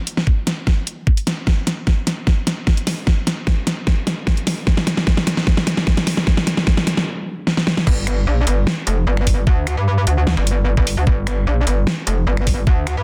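A dubstep drum kit with a huge snare, bright hats, finger snaps and crash cymbal opens this chaotic, heavy half-time wobble dubstep in G minor at 150 BPM, building through fills over a knocking, tape-warm electronic kick until a stop at 7.1 seconds, before the drop at 7.9 seconds brings in an aggressive, metallic FM wobble bass, saturated with chorus and overdrive and ranging from F1 to G2, set in a dense, heavily limited modern master with light digital reverb.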